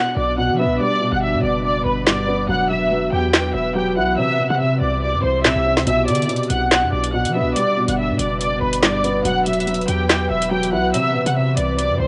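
Hip hop drill at 142 BPM in a half-time feel, this menacing, tense excerpt is led by a lush, bowed studio violin section with smooth vibrato, sitting up front over a soft, felt-muted upright piano and an ethereal, airy pad that hovers in the background with chorus and reverb, over a cycle of Bm, G, Emadd9 and C. A punchy, heavy 808-style bass with a fast attack comes in almost at once. At 2.1 s the drill drum kit arrives with a woody snare, metallic hi-hats and handclaps, while the home cassette recording gives the strings, piano and pad a dusky, filtered tape haze.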